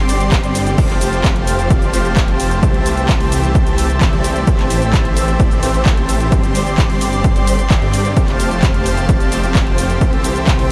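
A steady, straight 4/4 pulse at 130 BPM drives this triumphant, uplifting slice of festival progressive house in C major, with a punchy, overdriven electronic kick sitting up front from 0.3 seconds and a big-room kit of crash, handclaps, hi-hat and shaker carrying studio reverb. Huge, bright supersaw chords play a riff with chorus, vintage 12-bit sampler grit and analog delay over a thick, menacing detuned saw bass with tube saturation, while an airy unison pad holds sustained chords above, the pad, supersaws and bass all pumping with sidechain. The progression cycles through Gsus4, Fadd9, C6 and Am7, and the whole mix is dreamy and soaked in a huge ambient reverb, with some lossy compression artefacts.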